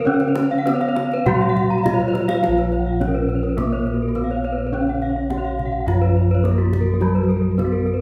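A brilliant, shimmering passage of Balinese gamelan at 105 BPM in Bb pelog opens at once with bronze metallophones carrying the melody, an accompaniment line and two layers of arpeggios, their paired tuning producing ringing, beating shimmer, while round, up-front bossed gongs anchor the bass. Some metallophones are struck with wooden mallets and others with horn mallets, one of them bright and airy, and a tight kendang sits in the background, playing a fill from 2.0 to 2.4 s that leads into a new section at 2.4 s. The ensemble is heard from further back in a reverberant recital hall, and the clip is cut from a longer piece.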